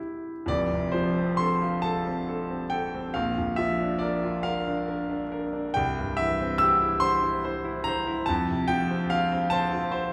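A brilliant, natural grand piano sits up front and plays alone in this nostalgic, serene excerpt from a romantic nocturne in F major, unfolding in a rubato 12/8 at roughly 35-52 BPM in dotted quarters, spanning F1 to E6 as it moves from F through Bb and C back to F, set in a wet recital hall reverb heard from further back in the room.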